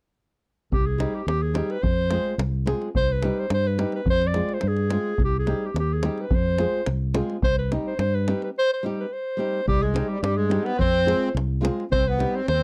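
Fiery and virtuosic, this short stretch of Balkan wedding-band folk moves at 107 BPM in a straight 2/4, rooted in C harmonic minor and rocking between Cm and Fm. A clear, classical-style clarinet carries the solo melody up front between G4 and D5. Beneath it, a round, punchy fingered electric bass sits direct and amped, while a deep, close davul drives the percussion. A dark flamenco guitar, fingerpicked with audible finger squeak, fills in the accompaniment from 1.0 seconds. At 9.7 seconds a sweet, reedy accordion with light tremolo tuning joins as a second line, sitting slightly forward in the mix. The sound is dry and close, like a 1970s studio session, and the passage is cut from a longer piece.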